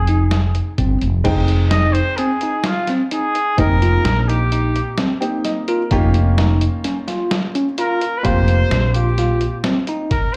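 Progressive instrumental band music in 5/4, tense and driving, with a vibrato-laden trumpet soloing from 1.2 s over a growly, up-front fretless electric bass, bell-like arpeggios on a phased tine electric piano, a short-sustain baby grand piano that slips in a fill at 5.0 s, and a muffled, pitched-down sampler-style drum kit, all heard as a live club gig through the venue's PA.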